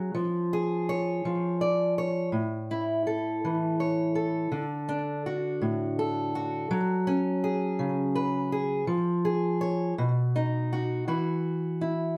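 Folk fingerstyle in a hopeful, pastoral mood, this brief section cut from a longer piece moves at a slow 55 BPM in 6/8 with a straight feel. A solo fingerpicked steel-string acoustic guitar, warm and placed up front, plays alone throughout, spanning A2 to D5 and carrying a slapback echo within a moderate studio reverb. The harmony passes through C#/E#, A, D, F#madd9 and B before settling on Esus2 as a brief new section begins at 11.1 seconds.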